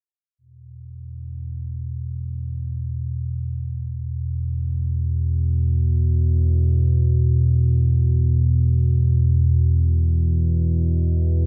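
A dark, close-sounding production with little room reverb carries this ominous, desolate ambient excerpt in free time, where the harmony rests on an E5 chord from 0.4 seconds before a deep, rumbling, wave-folded drone of triangle and sawtooth tones swells in slowly at 1.0 seconds, sitting up front between E2 and B2 with its own built-in reverb and long release until the cut at 11.5 seconds.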